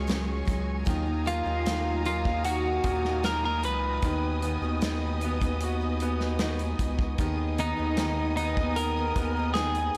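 A straight 76 BPM pulse in 4/4 from a natural country drum kit, with its tight kick, medium-tuned snare and hi-hat, anchors this heartbroken, emotional pop ballad fragment in Eb minor, where a deep, saturated sub bass sits up front beneath a brilliant, woody upright piano, a full-bodied steel-string acoustic guitar picking arpeggios with audible finger squeak in the background, and a distant, lush string section sustaining chords with vibrato and portamento, while a clean, compressed twelve-string electric guitar carries the melody from 1.3 seconds over chords moving from Dbsus4 through Ebmadd9 and B/D# to Abm/Eb, all heard through a blown-out, overdriven recording with light reverb.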